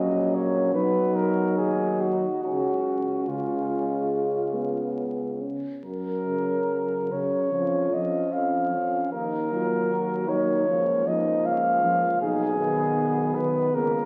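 In a rubato 4/4 pulse drifting between 68 and 81 BPM, this tender, serene, hymn-like classical passage for brass band is led by an up-front flugelhorn with a mellow tone and light vibrato, over a tight, soft-attacked French horn section carrying the second line. A smooth-topped euphonium and trombone supply the accompaniment while a clear tuba anchors the bass, all five playing throughout the 14.1 seconds as the harmony moves from F# through C#, D#m and A#m/C# to a closing B6. The sound is that of a very old 78 rpm record, with vinyl crackle, dulled highs and a wet scoring-stage reverb around the players.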